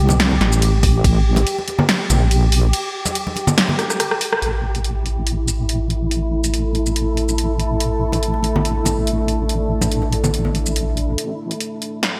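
A bright, 1980s-style digital sheen and a moderate plate reverb frame this meditative, dark slice of deep dubstep at 142 BPM, moving in a swung half-time feel. An up-front, sawtooth-edged wobble bass with chorus sits under an airy, breathy wind-like noise texture, while a punchy, overdriven deep house kit of hi-hat, ride, rim click, shaker and snare carries gated reverb, joined by ringing acoustic congas with dub echo and a brief overdriven electronic kick in the background. After a break and drum fill, a moody, mellow ambient pad with slow-attack chords enters at 5.6 seconds, and a short build-up starts at 11.2 seconds.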